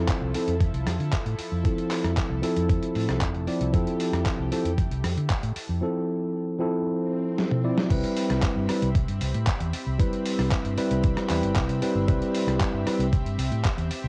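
Heard through light reverb on a home cassette recording, this sunny, feel-good nu-disco excerpt sets a clean, up-front tine electric piano with tape echo, a thick, detuned sawtooth pad with chorus and a dark, round, foam-muted fingered electric bass under sidechain pumping, while a gritty, overdriven sampler-style soul drum kit and a thumpy electronic kick, both re-recorded in a small room, carry the groove until an electronic swell at 7.0 seconds and a drum fill at 7.4 seconds lead into the drop at 7.9 seconds, where the harmony moves from Fmaj7 to Cmaj7.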